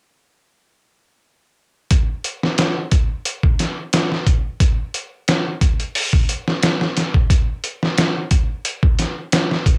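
This home cassette recording carries a moderate studio reverb with a short tail of about half a second. The excerpt is cinematic, brooding trip hop at 89 BPM in 4/4, with a light swing on the sixteenth notes. A sampler-style drum kit of kick, snare and hi-hat plays from 1.9 to 9.8 seconds, sitting up front in the mix. The kit is compressed, pitched down and gritty, built on a thumpy kick and a medium-tuned snare. Re-recorded in a small room and run through cassette tape, the drums take on a tape-warm tone that suits the brooding mood of the beat.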